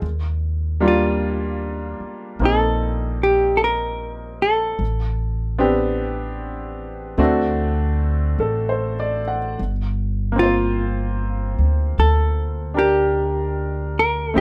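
A bright upright piano, with audible action noise, and a woody pizzicato upright bass open this intimate, wistful swung jazz ballad excerpt, and at 0.9 seconds a dark, clean hollow-body electric guitar takes the picked melody up front, over a progression from Ebmaj9 through Am11 and D7 to Gm7 in a lightly reverberant room.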